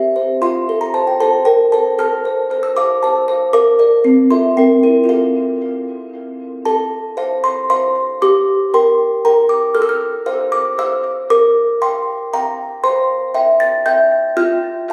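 Captured on a phone in a reverberant room, this short classical lullaby has a moderate hall-like tail around a close, up-front music box whose delicate, tinkling plucked tones carry a touch of tape echo. Played solo at 116 BPM in a straight 3/4 in F major, tuned slightly low to A4 = 438 Hz, the large box ranges from C4 up to A6. Its innocent, tender phrases move through simple F major harmony, with a second phrase beginning around 6.7 seconds that leans on G minor before settling on C, the harmony dropping away near 14.4 seconds.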